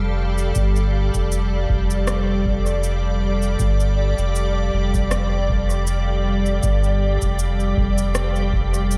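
Ambient dub at 79 BPM in a meditative, hazy mood, this short excerpt rests on a single D minor chord. A calm, organ-like pad with a detuned, warbling shimmer and ensemble chorus sustains chords up front over a deep, round sub bass with tube saturation. From 0.4 seconds, an overdriven cabasa and rim click trail dub echo, while a very quiet, tape-warm electronic kick enters at 0.6 seconds, all set in a dreamy mix soaked in huge reverb.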